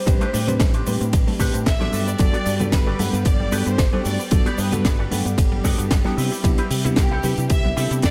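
Nu-disco at 113 BPM in 4/4 with a light 16th-note swing, this short excerpt has a sleek, cosmic mood as it moves from Am11 to Gmaj9 and settles on Cmaj7 at 6.2 seconds. A punchy, tape-warm electronic kick sits up front with studio reverb, joined by a tight, dry funk kit of hi-hat, ride, shaker and a high-tuned snare, while ringing congas played with hard hands stay in the background. A deep, round fingered electric bass carries the low end. A bell-like tine electric piano comps with sidechain pumping and delay, and an envelope-filtered electric guitar adds a twangy, picked riff through lush chorus and delay. A rich symphonic violin section bowed with vibrato carries the melody, trailed by dub echo. Underneath, a very quiet detuned unison pad holds sustained chords and an equally quiet analog pluck spins arpeggios, all set in a small room ambience.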